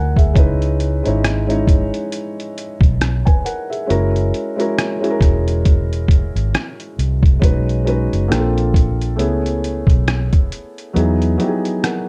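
Lo-fi hip hop with a mellow, nostalgic mood, this short cut from a longer piece sets a soft, intimate felt-muted upright piano with cassette tape coloring against a round, foam-muted electric bass, both sitting up front. A compressed, pitched-down trip hop sampler-style kit with a thumpy kick, hi-hat and rim click enters at 0.2 seconds over a swung groove, while the harmony moves from C#m7 and F#7 into a lusher run of B69, A#maj9, Amaj9 and Emaj9 from 7.4 seconds. The dark production carries light reverb, and the bass drops out at 11.4 seconds as the piano and drums carry on.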